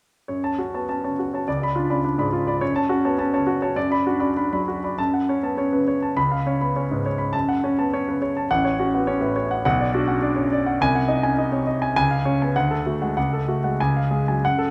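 A solo concert grand piano opens at 0.3 seconds with an agitated, stormy virtuoso study in F# minor, moving in a rubato 2/4 at roughly 94-106 BPM and ranging from deep bass notes around A1 up to B5. The instrument sounds intimate and up front, with natural tone, short sustain and audible action noise, set in a moderate concert hall reverb. Around 5.0 seconds a second section begins, pressing toward dominant harmony on C# before the clip, cut from a longer piece, breaks off at 14.7 seconds.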